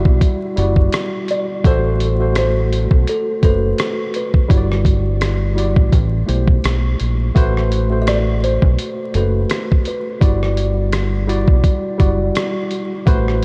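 Nostalgic and hazy, this lo-fi hip hop excerpt moves at 84 BPM in A dorian with a gentle 16th-note swing, cycling through Em7, Am69 and Em7/G under a layer of vinyl crackle, light reverb and digital ambience. A worn, slightly out-of-tune tine electric piano with light overdrive and cassette tape colour carries the chords from the start, while a dark, round, punchy fingered electric bass and a compressed, pitched-down, muffled sampler-style drum kit with a thumpy kick, hi-hat and rim click sit up front. From 1.3 to 11.3 seconds a woody, hollow kalimba with a thumbnail pluck and tape echo adds a short, vintage melody in the background.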